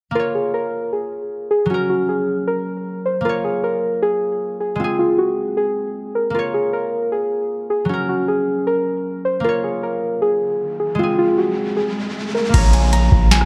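Eerie and menacing, this half-time trap excerpt sets muted, felt-like synth keys with chorus and digital delay as the up-front melody over ringing fingerpicked concert harp. A riser builds from 10.5 seconds before a booming analog drum machine with deep kick, crisp snare and metallic hats arrives with a long, sine-deep 808-style bass at 12.5 seconds, while a glassy FM pad drifts in far back at 12.8 seconds, all in a dark, lightly reverberant production.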